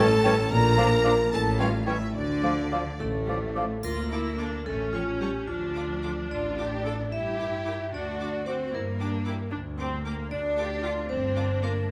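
A bright, metallic vibraphone played with hard mallets enters at 3.0 s and carries the ringing lead of this playful, whimsical film cue in D minor, a quirky, mischievous passage cut from a longer piece and moving at 74 BPM in a straight 6/8. Above it, a clear, focused violin section sings the melody high with vibrato throughout, while a second, lush violin section sits distant in the background on a supporting line. The opening is fuller: a dark, soft-edged French horn section and the warm clarinet hold chords and lines until 3.0 s, while an airy flute, a light-vibrato oboe, a very quiet bassoon and a mellow, roomy tuba fall away by 3.7 s. After that the strings carry on, with a smooth, close viola section accompanying, a focused cello section and an intense, up-front double bass section anchoring the low end. A soft triangle enters briefly at 3.8 s in the background. The harmony moves from A7 and Dm through a brief unharmonized moment into D7 and Gm, all set in a moderate scoring-stage reverb.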